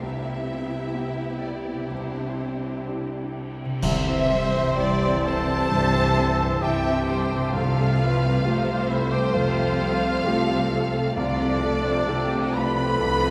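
A cinematic, emotional film score for orchestra, this hopeful and tender passage moves at a rubato 66 BPM in C major. Rich, expressive violins carry the melody above a warmer second violin line, while dark violas and a warm piano with audible action noise sit in the background. A very quiet, ringing harp adds arpeggios, and a hushed, smooth cello section holds the bass. Dark cymbals and bass drum sound in the background from the start of the excerpt, and at 3.8 seconds a band accent brings in a punchy solo cor anglais, a mellow French horn section, a focused double bass section and soft, round timpani. The harmony drifts from Em/C and Cadd9 to C, Fadd9/C and Dm7/C, all bathed in a wet cathedral reverb.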